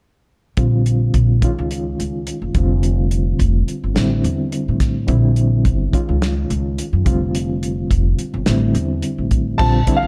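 Bright and slick, this short excerpt from a longer electric jazz fusion piece moves at 106 BPM in 4/4 with a light sixteenth-note swing, its chords cycling through Bbadd9, Dm7/F and Am7 with breaks where the harmony drops out. A gritty, reedy overdriven electric piano with fast tremolo comps through a combo amp alongside a woody, growly pizzicato upright bass and a dry, damped 70s drum kit with dark cymbals, medium-tuned snare and tight kick, all from 0.6 seconds. Near the end, at 9.6 seconds, an intimate baby grand piano with audible action noise slips in with a brief high melody, all captured in a dark, warm production with little reverb.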